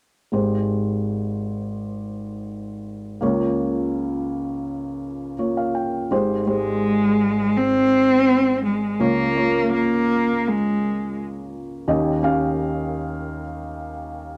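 Nostalgic and hopeful, this acoustic folk-pop ballad moves at an unhurried 83 BPM in Ab major, with a soft, felt-muted upright piano supplying mellow, intimate accompaniment over Abmaj7, Db6 and Eb7 chords. At 6.5 seconds a single bowed cello takes the melody, rich and expressive with vibrato and portamento, before dropping out at 11.2 seconds. A large studio reverb and dark production give the short excerpt a spacious, enveloping glow.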